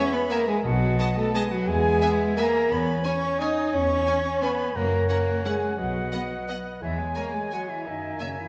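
An elegant, festive classical passage in three-time, cut from a longer piece, moves with uneven, rubato beats through a harmonic sequence that closes on an F#13 chord. Violins carry the melody from the background, their bowed, focused tone shaded with vibrato, while a pure, silver-toned flute, a mellow cor anglais, a second violin line and a vintage-tinged clarinet weave secondary lines around it. A French horn section holds sustained chords that sit prominently at the front of the texture, and a mellow bassoon joins a very quiet, smooth-topped viola section in the accompaniment. Cellos with expressive portamento anchor the bass alongside a double bass section that enters at 0.6 seconds. Timpani struck with hard mallets add brief, articulate accents at 0.6 and 4.8 seconds, and a scoring-stage reverb gives the whole ensemble a spacious, wet sheen.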